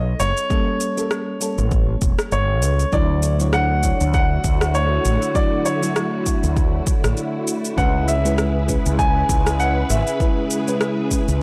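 Smooth and relaxed, this sunset chillout excerpt in swung 4/4 sets a dark, mellow baby grand piano melody with tape echo over a soft FM electric piano treated with chorus and phaser, a round, punchy fretless bass with tube saturation, and an overdriven electronic kick drum, shaker and rim click, while a silky string machine with ensemble chorus joins at 2.9 s, the whole captured in a dry, gritty hardware recording with light digital reverb.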